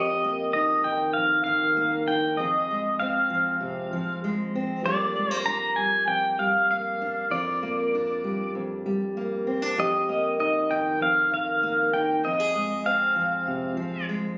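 From the opening moment, a pedal steel guitar and a fingerpicked steel-string acoustic guitar sound together in this melancholic, reflective acoustic folk piece, a short cut from a longer performance in a steady, straight 4/4. The pedal steel carries the melody high in its range, its electric tone bright and clean, compressed, shaped by volume swells and slide, and picked with fingerpicks. Beneath it, the acoustic guitar provides a warm, fingerpicked accompaniment that spans from deep bass notes into the middle register, and both instruments sit up front. The harmony moves between Eb over F, F minor and G minor seven over F, giving the passage a hovering, unresolved quality. The sound carries a moderate studio reverb, but the recording was made on a phone in the room, so the top end is dull and muffled. The steel falls silent at 14.0 seconds, leaving the acoustic guitar to ring on alone until 14.4 seconds.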